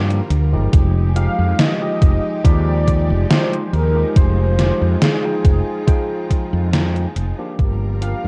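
A velvety, detuned synth lead carries the melody through this melancholic, nostalgic vaporwave fragment, shimmering with chorus, vibrato and tape echo. Beneath it, an overdriven tine electric piano adds a barky, gritty accompaniment bathed in lush chorus, while a clear, bowed string section holds quiet sustained chords. A round, mellow fretless bass sits up front, joined by a thumpy, overdriven electronic kick from 0.7 seconds and a digital drum machine whose hi-hat and snare carry a gated 80s reverb. The groove has a gentle swing on the sixteenths, and the harmony rests on Fm9 before shifting to Gm7 near the end. The dark cassette-tape production keeps the sound dry and close, and the music fades out from 5.3 seconds as this cut from a longer piece closes.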